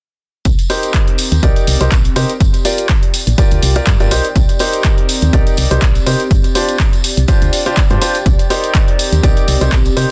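Energetic yet bittersweet, this piano house excerpt moves at 123 BPM in C minor with a light 16th-note swing, cycling through Cm7, Gm7 and G7sus4 chords. A punchy, tape-warm electronic kick sits up front, joined from 0.5 seconds by an analog drum machine supplying handclaps and hi-hat, while a very quiet tambourine adds a small-room acoustic shimmer. Underneath, a solid FM bass with a round, dark tone and fast attack pumps through sidechain compression. A clear, intimate grand piano carries the riff from 0.7 seconds, its action noise audible and its sound polished through a low-pass filter, delay and sidechain pumping. Behind it all, a warbling, nostalgic pad of detuned square, triangle and sawtooth waves swells in at 0.9 seconds, washed in chorus, phaser and its own reverb. The mix is dry, dense and heavily limited in a modern style.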